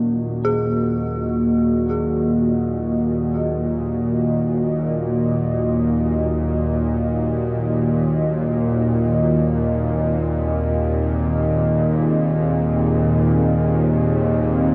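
In free time, this ominous dark ambient drone in Eb dorian, cut from a longer piece, sets an up-front, tense, string-like bowed drone with vibrato and a filter sweep low under a deep, moody pad of sustained chorused chords, while an eerie, inharmonic detuned synth bell arpeggiates through diffuse delay until 9.2 seconds and a very quiet metallic singing bowl rings with slow beating, all bathed in a huge, wet reverb.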